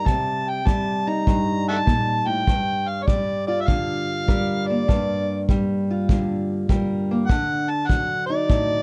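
Soulful and brooding, this short cut from a longer acoustic country blues piece in G minor moves at 100 BPM in 4/4 with a swung eighth-note feel, passing from Cm7 to Gm7 and landing on D(b9) at 7.3 seconds. An amplified, overdriven harmonica carries the melody up front with a gritty edge, light vibrato, tongue slaps and a soft attack in a jazz-leaning solo style, while a boxy, parlour-style steel-string guitar fingerpicks the accompaniment. A tight, natural kick drum played with brushes keeps time in a studio room, and light reverb sits over a dark, warm production with a muted top end.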